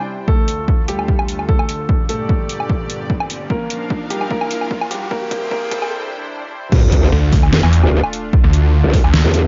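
Heavy wobble dubstep in D minor at 149 BPM with a half-time feel, this menacing cut opens with an intimate grand piano melody, its action noise audible, over a lush, evolving supersaw pad with gritty sampler texture and sidechain pumping, while background swells, a riser and a sub drop build tension alongside a punchy electronic kick and an overdriven kit of deep snare, metallic hats, crash and woodblock. The piano stops at 5.9 seconds for a brief break before the drop at 6.7 seconds, where a wobbling, formant-filtered growl bass with chorus surges to the front, joined at 7.1 seconds by a snarling, detuned sawtooth bass with a resonant moving notch. The dark production sits in light digital ambience with the top end filtered away.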